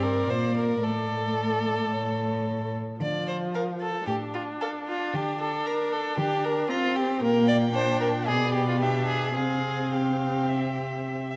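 In a straight 4/4 pulse, this restless, stormy classical-period movement for string quartet, cut from a longer piece, sets a dark, expressive first-violin melody with vibrato and portamento, sitting softer in the mix, above a rich, up-front second-violin line, a focused viola accompaniment and a smooth, close cello bass, all four bowing throughout the roughly 11-second excerpt in a moderate scoring-stage reverb.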